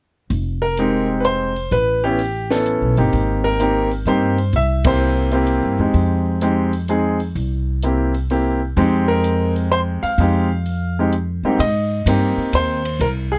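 A clear, natural baby grand piano carries the melody up front in this moody, late-night jazz piano trio piece, a short cut from a longer performance in F minor at 128 BPM in a swung 3/4, moving through chords such as Fm9, Abmaj9 and C7. A woody pizzicato upright bass with steel strings sits close beside it, while a compact cocktail kit of hi-hat, kick, ride and snare sounds smooth and small-roomed, with a high-tuned snare, a punchy kick and a rolled-off top end. The whole trio lands a shared accent at 4.8 seconds, and the dark production keeps reverb to a minimum.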